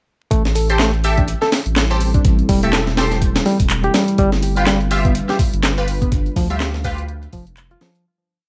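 A gritty, pitched-up sampled break with a thumpy kick and high-tuned snare drives this funky, raw breakbeat piece at 124 BPM with swung 16ths in A minor, topped by a tape-warm machine layer of closed and open hats and claps, while a thick, saturated sine sub bass plays long gliding notes, a reedy, lightly overdriven electric piano repeats a 32-step riff through delay, bold, detuned orchestra-hit-style synth stabs punch out syncopated chords through phaser and reverb, and a dark, chorused, sidechain-pumped pad enters at 1.5 seconds in the background over Am7 moving to G7, with vinyl crackle and light reverb throughout before a fade-out from 5.5 seconds.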